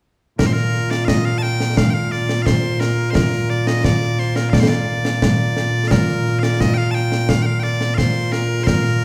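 Bathed in the wet, lingering reverb of a church or concert hall, this short cut from a longer piece of Scottish pipe music carries a proud, ceremonial air in a straight 2/4. Loud, piercing bagpipes hold the melody up front in one continuous, solo line from 0.4 to 9.0 seconds. An acoustic concert snare drum and concert bass drum with dark cymbals keep the beat alongside them.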